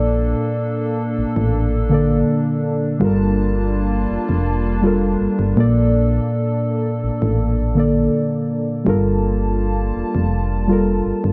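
Set in light reverb and a digital ambience, this short contemporary R&B excerpt carries a longing, late-night mood in a straight 4/4 feel, moving between Bbmaj7 and Gm9 throughout its 11.3 seconds. Muted, felt-like synth keys sit up front with an intimate, warbling, vintage tone and chorus, while a hollow, flute-like pad with chorus holds sustained chords alongside them. A punchy, round FM bass anchors the low end with a fast attack and mellow decay.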